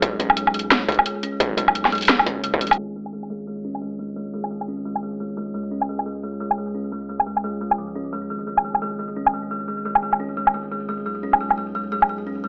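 Half-time drum and bass at 174 BPM with a swung sixteenth feel, dark and spacious in a gritty, cassette-worn, AM-radio-like sound, where an up-front woody kalimba rings out hollow thumb-plucked arpeggios through tape echo and a low-pass filter that sweeps from 2.8 s, a deep, saturated sine sub bass sits in the background, a layered electronic kit plays filtered hi-hat, woodblock and a cracking snare, and a distorted electronic kick punches through only until 2.6 s.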